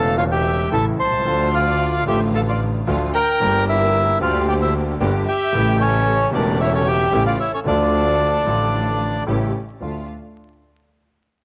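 A reedy, dark bandoneon carries the melody up front from the first moment, over a biting, nasal bowed double bass, a grand piano in the background and a smooth violin section holding a quiet second line, all in a tense, melancholic tango with a rubato feel. At 1.3 seconds a lush symphonic string section adds soft-attack stabs as the harmony moves through Dm, Gm and A7, and the violins and bandoneon fall away at 9.2 seconds while piano, bass and strings continue. Moderate spring reverb, small room ambience and vinyl crackle surround this cut from a longer piece.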